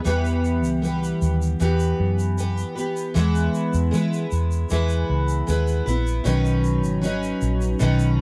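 Easy-going and carefree, this short acoustic pop cut moves at a relaxed straight pulse over Em, E and Badd9, its picked steel-string acoustic guitar sitting up front with a full-bodied dreadnought tone, fresh strings, audible finger squeak and a double-tracked thickness. A vintage muted electric bass, played with the fingers, adds a dark, round and punchy low end from 0.1 seconds, while a grainy, bright egg shaker sits far back in the mix. The sound is dry and close, like a 1970s studio recording.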